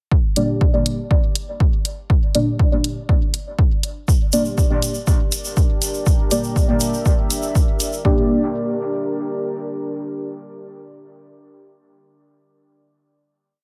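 Hypnotic and deep, this short dub techno piece sets a punchy, tape-tinged four-on-the-floor electronic kick and up-front programmed hi-hats under soft, detuned chord stabs carrying chorus, phaser, dub echo and a filter sweep, with a grainy tube shaker joining at 4.1 seconds and a moody, wave-folded ambient pad with sidechain pumping entering at 5.0 seconds before the groove gives way at 8.0 seconds to a final G minor chord in light digital ambience.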